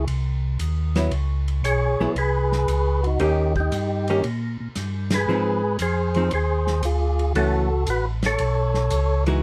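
A swung 4/4 groove drives this smoky, bluesy soul jazz organ trio, cut from a longer piece, as a mellow, round percussive tonewheel organ with key click and slow rotary speaker carries the melody over a piping, scooped tonewheel organ bass line, both lightly overdriven and up front, while a tight-kicked acoustic drum kit with dark cymbals sits further back in a small room, a clean, compressed hollow-body archtop guitar adds picked accompaniment from 1.0 seconds, and the band strikes a shared accent at 5.0 seconds, all set in moderate studio reverb.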